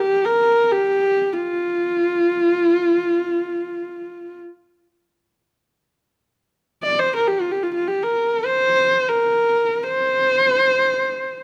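A solo horsehead fiddle carries this short Mongolian folk excerpt, its bowed horsehair strings producing a husky tone with a smooth top and a clear vibrato. The single player bends between notes with portamento, shaping an expressive line that sits up front and stays between F4 and D5. Played in free time, the music still feels galloping and proud, as if cut from a longer piece. The same phrase is stated twice, with the second statement arriving at 6.5 seconds and running to the close at 11.4 seconds. Close, detailed microphones and a light reverb keep the fiddle intimate and vivid.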